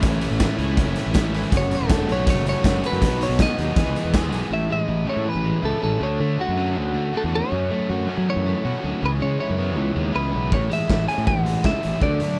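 Carefree and jangly, this indie rock excerpt moves at a brisk 160 BPM in straight 4/4, its chords turning from A and F#m7 through Badd9 and E into a section of Amaj7, Dmaj7, F#m7 and C#m7. An overdriven electric guitar and a scooped, high-gain guitar with distortion and subtle chorus set back in the mix play riffs throughout, over a growly, up-front fuzz bass, while a raw, gritty garage drum kit with a punchy kick and a pumping stone-room sound drives the opening, drops out at 4.5 seconds, and returns at 10.5 seconds, joined at first by a very quiet, jingly tambourine. From 1.6 seconds a bright, clean electric guitar carries the melody through tape echo, all in a dry, close mix.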